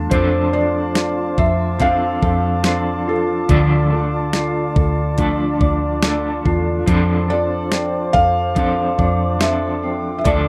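Dream pop in a blissful, dreamy mood, built on a dark, clean electric guitar with tremolo, lush chorus and plate reverb, a twangy, slightly broken-up guitar fingering arpeggios through subtle chorus and digital delay, a pure small flute group holding sustained chords, and a round, foam-muted vintage bass. A felt-muted upright piano carries the soft, intimate melody with audible action noise and its own digital delay, while a crisp, tape-warm 8-bit drum machine with a thumpy kick and medium-tuned snare sits up front. The harmony moves from F6 to Dm at 3.5 seconds and back at 6.9 seconds, all in a small room with a rough home-demo feel.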